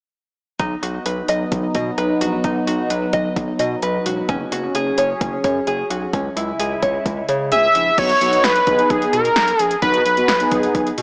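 Twangy, plunky banjo arpeggios with tape echo open this bright, upbeat synth-pop excerpt over a round analog bass and an overdriven deep house drum kit with a deep kick and metallic hats; a swirling phased pad joins at 0.9 s, from 7.5 s a bold, retro octave-doubled lead carries the melody, and from 8.0 s mellow synth brass adds chorused accompaniment, set in a lush hall reverb with a small-speaker sound.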